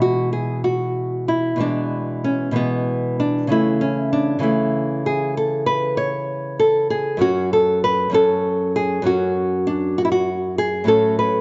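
In a rubato 12/8 lilt at about 65 dotted-quarter beats per minute, this flowing, dance-like baroque-style classical fragment, cut from a longer piece, features a solo fingerpicked nylon-string guitar, boxy and up front with audible finger squeak, ranging from F#2 to C#5 over E7/B, A/C# and, at 10.9 seconds, F#m/A, all set in a moderate recital-hall reverb with a softened top end.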